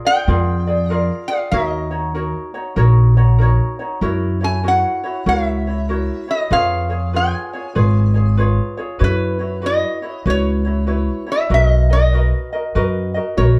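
Hawaiian swing with a sunny, languid mood, cut from a longer piece, where a nasal, metallic resonator slide guitar carries the melody up front with plate reverb over light fingerpicked ukulele and a woody, thumpy pizzicato upright bass, while a mellow soft-mallet vibraphone rings in only at 13.4 s, all set back in a wet studio reverb.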